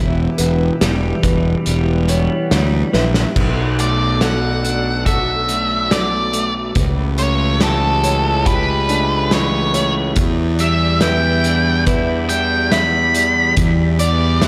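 A dark, fuzz-drenched octave-fuzz lead guitar carries the melody from 3.8 seconds in this cinematic, hopeful post-rock excerpt at 70 BPM, riding over an overdriven, round fingered bass, a gritty, punchy drum kit with dark cymbals that enters at 0.4 seconds and plays a fill leading into the second section, clean chorused guitar arpeggios with slapback echo, a soft felt-muted upright piano in the background, and a shimmering, airy pulse-width pad holding sustained chords through Em, Bm7, A7/C# and Em7, all set in a lush hall reverb with a big arena sound.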